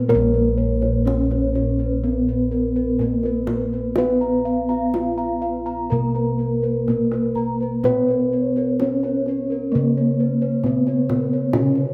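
At a slow, straight 62 BPM in 4/4, this stately, shimmering stretch of Javanese gamelan, cut from a longer piece, sets a ringing bronze metallophone melody over a softer metallophone accompaniment and deep, round bossed gongs on the bass line that sit up front. Higher arpeggios from a very quiet metallophone and mellow, padded bossed gongs glint above, with the paired tuning of the bars producing shimmering beats. A tight kendang played with soft hands joins at 0.1 s, and a moderate recital-hall reverb gives the ensemble a stately bloom.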